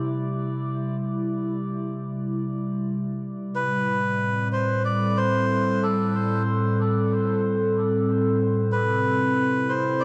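A warbling, tape-like pad opens this ambient excerpt on a C chord, its slow-attack tones sustained and softened by chorus and its own built-in reverb, giving a dark, nostalgic, lo-fi colour up front. The tempo sits at 93 BPM in a straight 4/4, and the piece is in A minor, tuned slightly sharp to A4 = 441 Hz. At 3.6 seconds the harmony shifts to Am7 and a reedy, breathy melodica enters with a mellow melody in a narrow upper range, its notes trailing off through dub echo. The pad's chords return to C at 8.7 seconds as both parts carry on to the end. A long plate reverb soaks the whole mix, leaving a deep, meditative, dreamy atmosphere.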